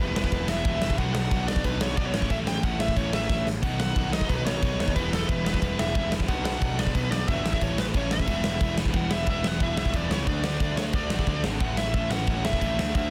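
Punk rock at 181 BPM in a straight 4/4, raw and angry, cut from a longer piece in E dorian. A bluesy lead guitar, picked and distorted, carries the melody across the whole passage. Two crunchy overdriven rhythm guitars play riffs behind it: one bright and set back, the other warmer and very quiet. A growly fuzz bass, picked and overdriven, sits in the background. The big acoustic rock kit sits up front with a punchy kick, a medium-tuned snare, crash and splash cymbals, and a stone-room sound; it enters at 0.2 seconds and plays a short fill at 3.3 seconds. The harmony cycles through Em, Bm, A and B, then shifts around 8.9 seconds to a new section built on Em, D and A, all in a dense, heavily limited modern master with little reverb.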